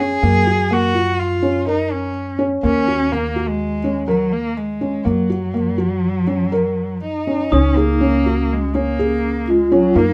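A dark, bowed cello sings the melody up front with vibrato and portamento over felt-muted upright piano arpeggios with audible action noise and a woody pizzicato upright bass, in this restless, shimmering contemporary chamber piece in 5/4 at 124 BPM in F# major, until at 7.5 seconds a mellow vibraphone with fast motor vibrato adds a second line and a bell-like glockenspiel rings briefly and airily in the background, all in light reverb.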